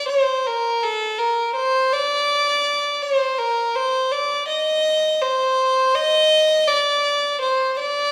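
A straight 4/4 pulse underlies this short Turkish excerpt, in which a solo violin plays alone from start to finish. The bowed line is longing and melancholic, with a soft attack and a sul tasto touch that gives it a pure, floating quality and a smooth top. Heard up front, the single player sits in the wet reverb of a large studio, as though performing live in the room.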